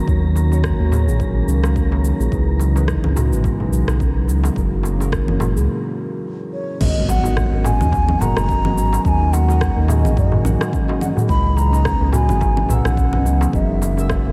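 A swung 107 BPM groove in 4/4 sets a hypnotic, mystical organic downtempo mood in G# minor, built on a punchy layered electronic kick, an overdriven afro-pop kit of cabasa, congas, crash cymbal and rim click, crisp dry darbuka tucked behind, and a deep, round analog bass sitting up front. Muted felt-like synth keys with chorus, pumping and analog delay, a very quiet warbling tape-like pad, a pure, ringing steel tongue drum with delay, and an airy wind-like noise texture that drops out at 5.7 s drift through a dreamy cathedral reverb over seventh chords. After a brief break, a breathy, hollow bass bansuri with 12-bit sampler grit and delay enters at 6.5 s to take the melody to the end of the excerpt, and a quiet electronic impact lands at 6.8 s.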